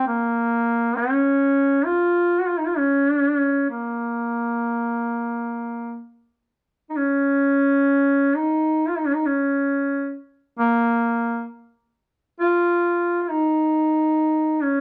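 A lone duduk opens this brief fragment of Caucasian folk music, playing by itself from the first moment to the close at 14.8 seconds. Its warm voice carries a longing, solemn mood, with scooped notes that give each phrase a sung, folk-style inflection. The line stays in a low, narrow register, moving freely in a rubato triple metre, so the pulse feels more breathed than counted. The duduk sits up front yet sounds distant and roomy, wrapped in the short, wet reverb of a small club. The melody falls into two sections, with the second beginning at 6.5 seconds.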